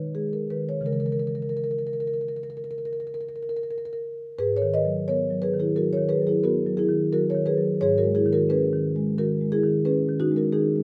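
Hypnotic and reflective, this brief contemporary classical excerpt features a solo marimba played with soft mallets, moving in a rubato 5/4 across a range from G#2 to D#5. The rosewood bars sound woody, mellow and round, and close, detailed miking keeps the instrument up front while a moderate recital hall reverb adds space around it. The harmony drifts from B6 to C#m6 before settling onto a G#m9 chord as a new section opens at 4.4 seconds.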